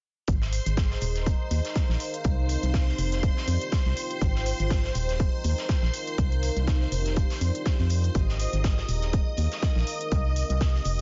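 A hollow, organ-like FM bass sits up front in this uplifting, feel-good piano house clip at 122 BPM in Eb major, its fast-attack, decaying notes pumping against a punchy, layered electronic kick. A crisp electronic hi-hat and a quieter acoustic kit with a medium-tuned snare add drive to the swung groove, both touched by small room ambience. High above, a shimmering vintage string machine holds bright sawtooth violin chords with ensemble chorus and sidechain pumping, while a deep, moody pad with a sub octave and long release joins at 0.7 s to fill the middle with mellow, chorused haze. The harmony moves through Ab, Eb5, Cm7, F5 and Ab6 chords, and the kick drops out at 10.7 s just before this fragment of a longer track ends at 11.0 s. The mix is dry, with a dark top end that rolls off above 7.5 kHz.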